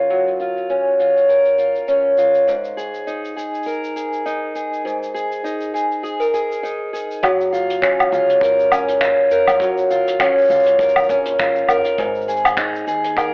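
A boxy, old-stringed ladder-braced acoustic guitar picks arpeggios up front under a filter sweep through the first 7.2 seconds of this playful, delicate folktronica piece at 101 BPM in Gb major, moving between Gbmaj7 and Absus2 with a swung 16th feel, while a distant, roomy jazz brush kit with finger snaps, hi-hat, shaker and woodblock also sits up front, and at 7.2 seconds a growly, woody pizzicato upright bass and a tight, rolled-off kick join in the background, all colored by spring reverb and a lo-fi cassette, telephone-like home-recording sound.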